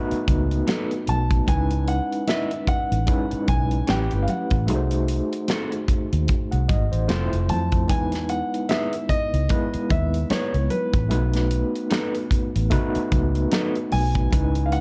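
Warm and romantic, this slow 1970s-style soul passage moves at 75 BPM in 4/4 with a swung sixteenth-note feel, cut from a longer piece. A gritty, barky overdriven tine electric piano with medium tremolo opens at 0.0 s and carries the accompaniment through a lush progression that runs from B7 through C#m9, A9, G#7b9/B#, Fmaj7 and Emaj7 before returning to B7. A round, foam-muted fingered electric bass sits up front with a punchy, dark tone, joined by an acoustic studio drum kit whose punchy kick, medium-tuned snare and hi-hat have a rolled-off top. Thick-skinned, damped congas played with soft hands sit in the background alongside a slightly broken-up, lo-fi electric guitar riff picked through a small old amp. From 1.1 s a smooth, vintage concert grand piano with deep bass sings the melody in its upper register, all bathed in studio reverb for a dark, warm production.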